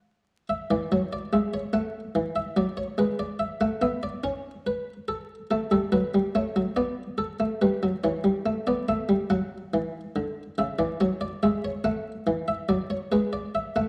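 A muted, lute-like buff-stop harpsichord plays alone throughout this elegant, stately baroque-style two-part invention in 6/8, its plucked, dry tone placed up front within a reverberant recital hall, while a dark production and vinyl crackle lend an aged feel to this fragment of a longer piece.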